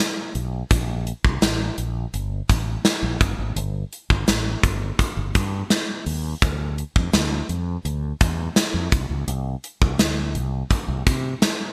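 Moody and nostalgic, this 1980s-style pop excerpt in D minor moves at 84 BPM in a straight 4/4, cut from a longer piece. A gated drum kit with hi-hat, tight kick, medium-tuned snare and tambourine sits up front with a bright, airy, polished sound and gated reverb, entering at 0.3 seconds. A round, punchy fretless electric bass ranges from G1 to C3 alongside it, arriving at 0.4 seconds in a bright digital production with little room sound.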